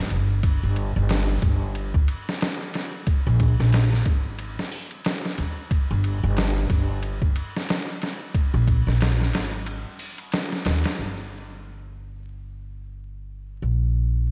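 Brooding and cinematic, this trip hop excerpt moves at 91 BPM with a 16th-note swing, as a woody, pizzicato upright bass sits up front from 0.0 s to the end while a compressed, pitched-down, muffled sampler-style drum kit with thumpy kick, medium-tuned snare, hi-hat and ride plays until a break at 9.7 s and stops at 11.0 s, leaving the bass alone amid light reverb and vinyl crackle.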